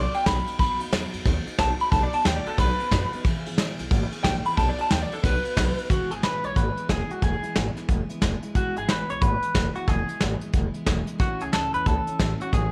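A twangy electric guitar through a small old amp leads this upbeat, rowdy rockabilly excerpt, its bright, slightly broken-up tone sitting up front with tape echo and opening on a clean solo that runs to 5.9 seconds. Underneath, a picked steel-string acoustic guitar with a full-bodied jumbo sound picks out accompaniment in the background, while a pizzicato upright bass on gut strings adds a woody, thumpy low end. A soft brush kit keeps time up front with a punchy kick, medium-tuned snare, hi-hat and ride cymbal. The tune moves at 181 BPM in 4/4 with a swung eighth-note feel in E major, shifting between B and E before reaching A at 11.2 seconds. Light reverb and a small room ambience give the band a close, lively feel.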